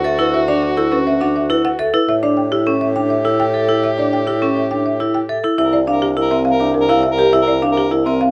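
Bright and propulsive, this short minimalist classical excerpt in 3/4 at 103 BPM sets a woody, dry folk marimba melody over ringing vibraphone arpeggios with a slow motor vibrato, while a clear soprano saxophone carries a second line and an up-front bassoon with vibrato holds the bass, the harmony moving from Dadd9 through A7sus4 to C9sus4 at 5.6 seconds in a close, detailed sound with light reverb.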